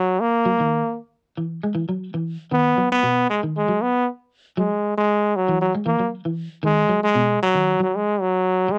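A lightly swung sixteenth-note groove at 117 BPM in 4/4 drives this short, intense and hypnotic afrobeat excerpt, moving through F#7, B, F#sus2 and B6. A brilliant, up-front trombone carries the pop-style solo melody between F#3 and B3 with a light vibrato, while a twangy electric guitar, fingered and slightly broken-up with an ensemble chorus, enters at 0.5 seconds with arpeggios below it. The sound is a dry, close 1970s-style studio recording with light reverb.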